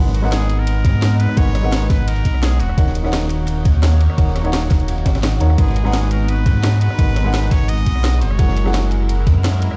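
A dark, intimate concert grand piano with audible action noise and delay, a lush, detuned unison pad washed in chorus and phaser, and a deep, up-front sine sub bass open this melancholic, soulful liquid drum and bass excerpt in G# minor at 171 BPM; at 0.1 seconds they are joined by a nasal, brilliant straight-muted trumpet melody with vibrato and digital delay, a crunchy, saturated breakbeat kit sitting in the background, and a garage kit with a cracking snare, rim clicks and hi-hats, before a gritty, thumpy, pitched-up electronic kick enters at 0.8 seconds, the mix sounding as if played on a big sound system in a bare stone room.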